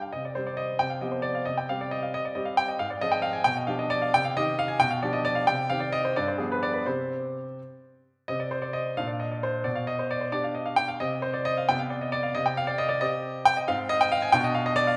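Elegant and serious, this is a short passage cut from a longer classical-period piano sonatina, moving in a lilting 6/8 with a gently flexible, rubato feel. A solo baby grand piano carries everything, its tone clear, present and polished, sitting up front and spanning from G2 up to Ab5. The music presents its opening section and then begins it again at 8.3 seconds, circling through minor-key harmonies that lean on dominant seventh chords resolving home. Later passages touch on a brighter Bb chord and a colored Cmadd11 before closing on a tense diminished chord at 14.3 seconds, leaving the phrase unresolved. A moderate recital hall reverb lends the instrument a natural sense of space.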